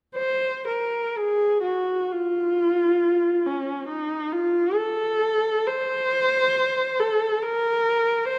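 A recital hall's lush reverb, with a decay of about 1.7 seconds, surrounds a single viola placed up front and close to the listener. This short excerpt of a free, expressive classical piece for unaccompanied viola carries a yearning, meditative mood. The bowed viola sounds from 0.2 to 8.4 seconds, moving between Db4 and C5 with a warm tone and a smooth top. Its line is shaped by vibrato and portamento. The rubato feel in 4/4 gives the phrase an intimate, searching quality.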